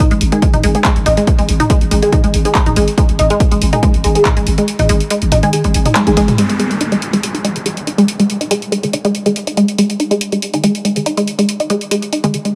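A straight 4/4 pulse at 141 BPM drives this hypnotic peak-time techno excerpt: a punchy, tape-warm electronic kick drops out at 4.3 seconds, while a growling, buzzy 808-style bass with overdrive and sidechain pumping holds the first half. An analog drum machine keeps handclaps, hi-hat and toms going throughout and plays a fill from 6.0 seconds, where the band lands an accent. A juicy, squelchy, detuned blip pluck riff sits up front with phaser, chorus and delay, muted, full-bodied dub chord stabs take on a filter sweep from 6.4 seconds, and a downlifter passes through the second half, all in light reverb.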